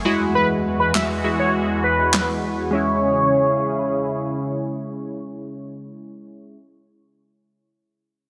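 Overdriven, punchy electronic handclaps and snare, layered and up front, drive this energetic 101 BPM dance-pop fragment in C# minor from 0.9 to 2.3 s, beneath an airy, detuned sawtooth pad with a resonant filter sweep through 2.7 s, glossy pulse-wave retro synth keys moving from Eadd9 to C#m, and a bold octave-doubled lead with vibrato, chorus and digital delay, set in a lush hall reverb and a dense, heavily limited master.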